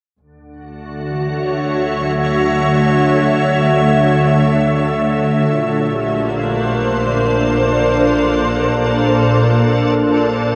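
Steeped in a wet scoring-stage reverb and the warbly pitch drift of worn cassette tape, this weightless ambient excerpt at 68 BPM in 3/4 places a pure, detuned organ-like pad up front with ensemble chorus, holding sustained chords that move from Dmaj7 to Bbmaj7 at 5.5 seconds, while a bowed, lush double bass section with vibrato fades in from 0.2 seconds in the distant background and a very quiet, barky tine electric piano played through a combo amp adds arpeggios from 1.1 seconds.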